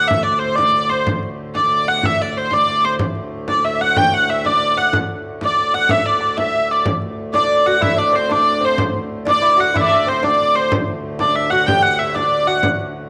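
In a steady 6/8 metre with a straight feel, this festive, rustic medieval dance is cut from a longer piece and built on a repeated passage heard twice. A single wheel-bowed hurdy-gurdy carries the melody up front, its nasal, boxy voice smooth and even, with a slapback echo trailing its line. Beneath it, a pedal harmonium holds a low, reedy drone that sounds airy and breathing. A frame drum played with hard hands keeps the dance moving, its compressed, saturated tone sitting well behind the melody. When the passage comes around again, a fingerpicked lute enters at 7.3 s with a bright, delicate second line on nylon double strings, some doubled at the octave. A wet echo-chamber reverb and small-room ambience give the whole performance an intimate, resonant setting.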